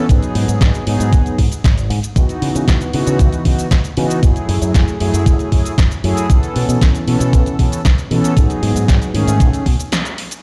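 Nu-disco at 116 BPM, sleek and groovy, in a short cut from a longer piece: an overdriven, thumpy electronic kick and a layered house kit with a punchy snare, bright hi-hat and cabasa drive a drop under a round, brassy synth-brass bed with chorus, delay and sidechain pumping, while a fingered electric bass through an envelope filter snaps out over G#m7, C#m11, F#m9 and B9sus4, all sounding as if played on a big system in a bare stone room, until a band accent at 9.9 s opens a brief break.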